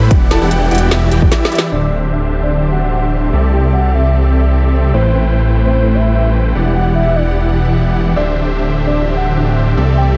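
Set in light reverb and digital ambience, this bittersweet, dreamy future bass excerpt moves in a half-time feel, with huge, airy supersaw chords playing an up-front riff and a thick, detuned saw bass with chorus, both pumping under sidechain. A punchy, overdriven electronic kick and a trap kit with a woody snare and crisp, low-passed hats drive the opening drop, which breaks into a drum fill before the drums stop at 1.7 seconds. From there a filter sweep runs across the supersaws. Throughout, a soft, round octave-layered lead with chorus, phaser, tape echo and vibrato sits in the background beside a clear, smooth symphonic string section holding sustained chords, over a progression that begins on Em9.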